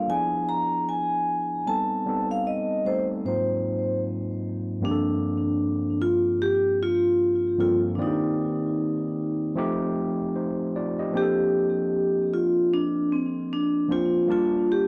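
A ringing, metallic vibraphone struck with medium hard mallets carries the melody up front with a slow motor vibrato over a barky, gritty overdriven tine electric piano played through a combo amp in this sultry, soulful swung R&B fragment, whose dark production and light small-room reverb frame a harmonic shift at 4.8 s into a passage moving from Gm11 through Cm7, F7 and Bbmaj7.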